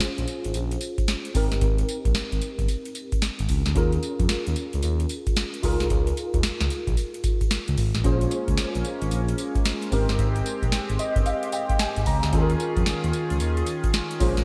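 Bouncy and slick, this short new jack swing groove at 112 BPM swings its sixteenths. A booming analog drum machine with a deep kick, crisp gated-reverb snare, metallic hats and tambourine sits up front beside a smooth gliding synth bass, dark and sustained with portamento, which enters at 0.2 seconds. A worn, slightly out-of-tune tine electric piano with ensemble chorus plays a fill from 10.7 seconds, a grainy, distant tube shaker sits faintly in the background, and a shimmering chorused pulse-width pad arrives at 8.0 seconds as the harmony cycles through Bbm7, Abmaj9, Eb9sus4 and Db69 chords in bright 1980s-style digital production.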